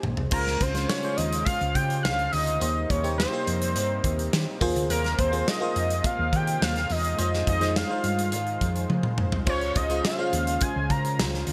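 Upbeat and breezy, this polished 1980s jazz-funk pop excerpt at 105 BPM opens on a drum fill from a punchy, up-front studio kit with gated reverb, over which a dark, round hollow-body bass and a glassy, bell-like FM electric piano with phaser and subtle chorus support a fat, detuned analog lead with portamento and lush chorus entering at 0.3 seconds, while a thick, warbling unison pad sits in the background through chords moving from Dbmaj7 through Eb6, Ab69 and Fm7, with another fill at 8.9 seconds in a bright digital production.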